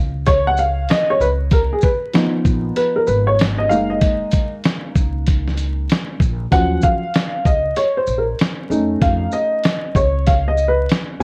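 Nocturnal and smoky, this swung jazz-hop passage, cut from a longer hip hop piece, moves at 96 BPM, opening with a growly pizzicato upright bass before a dark, slightly detuned upright piano with audible action noise and plate reverb takes the solo up front at 0.3 s over a gritty, compressed sampler-style drum kit of thumpy kick, fat snare, hi-hat and shaker, while the chords drift from F7(#5, omit3) through Db7, Gb69 and Ebm9 to Faug7 beneath worn, warbling cassette tape and vinyl crackle.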